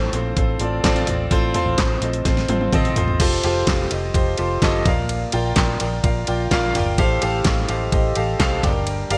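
Uplifting piano-driven pop at 127 BPM, this bright 1980s-style clip sets an intimate concert grand piano, its action noise audible beneath a lush chorus, over a dark, round, foam-muted fingered electric bass and an up-front electronic drum kit whose knocking kick, fat snare, handclaps, hi-hat, cymbals and toms carry gated reverb, with a drum fill from 2.3 to 3.2 seconds leading into a new section as the chords move from F/A through Fadd9 and Bb toward Gm.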